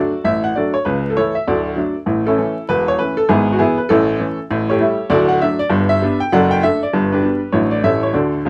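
A close, dry 1970s-style studio sound with vinyl crackle and a modest booth ambience frames this brief, playful stride piano passage, cut from a longer jazz piece. A lone upright piano carries everything from 0.0 to 8.5 seconds, its tone clear, woody and natural, with short sustain that keeps each note crisp and up front in the mix. The tempo is a brisk 198 BPM in 4/4 with a swung eighth-note feel, giving the exuberant mood plenty of bounce. In D major, the harmony moves through D, A/C#, E/G# and A7 before settling toward G, D/F# and D/A, closing on A7. The piano spans a broad register from D1 up to G5.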